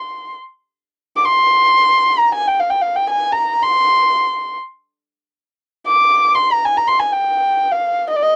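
A dark, intimate kamancheh plays alone for the full 8.4 seconds, its airy bowing, soft attack and light vibrato sitting close and up front between D5 and D6, giving this brief, longing and hypnotic Turkish makam fragment a dry, homespun cassette sound.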